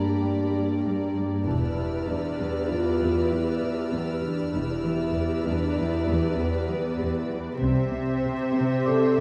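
A straight, unhurried pulse in 5/4 at 97 BPM gives this short suspense film-score excerpt an uneasy, off-kilter gait. The mood is mysterious, with harmony moving from G minor to E minor seventh and settling on C. A chamber violin section carries an intimate, softly attacked melody played sul tasto, while a dark, woody viola section fills in a lush accompaniment beneath it. The French horn section holds sustained chords with light vibrato, joined by a glassy, ethereal glass harmonica. In the low register, one cello section plays a floating riff and another a pure bass line, and a double bass section joins them from 1.5 s to 8.2 s. A bell-like celesta sits delicately in the background, and a high symphonic violin texture hovers above until 7.3 s, all set in a reverberant scoring-stage space heard from further back, with vinyl crackle.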